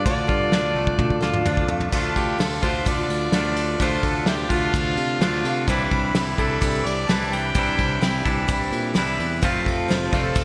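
Dusty and wistful, this folk rock and heartland rock excerpt moves at 128 BPM in D minor, with a gritty, overdriven harmonica carrying the melody through digital delay and taking a solo from 1.9 seconds over Dm, Cadd9 and F chords. A shimmering, octave-doubled twelve-string acoustic guitar and a clean, twangy electric guitar riff with subtle chorus fill out the band, while a fingered electric bass sits underneath and a soft brush drum kit, up front with gated reverb, plays a fill at 1.0 seconds. A mellow tonewheel organ with slow rotary speaker holds very quiet chords only until 1.9 seconds, and the mix sits in a lush hall reverb with bright 1980s-style digital production.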